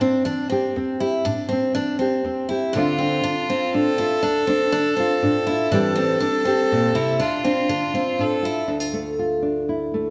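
Reflective and intimate, this short excerpt of acoustic folk moves in a straight 3/4 at 121 BPM in D minor, with a thumb-plucked nylon-string guitar carrying the accompaniment up front while a picked steel-string acoustic guitar adds arpeggios until 8.7 seconds. A clear, earthy fiddle with light vibrato enters at 2.7 seconds as a bowed second line, sounding distant yet present, and the harmony shifts between Am7 and Dm7 before settling on Dmadd9. The whole sits in a moderate concert hall reverb that gives the close, warm guitars an airy space.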